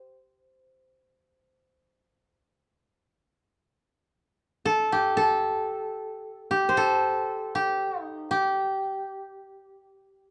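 Dark, warm production sets a solitary koto inside a moderate recital hall reverb, though the instrument itself sits dry and up front, its woody tone close to the ear. This is Japanese traditional chamber music, cut from a longer piece, moving in a free rubato around 53-60 BPM in 4/4 with tuning near A4 = 437 Hz. The koto plays alone throughout, plucked with fingerpicks in a narrow span from G4 to C5. Its first phrase runs to about 4.7 seconds, and a second passage carries on until 10.3 seconds. The mood stays still and solitary, the single acoustic voice hanging in the hall's gentle ambience.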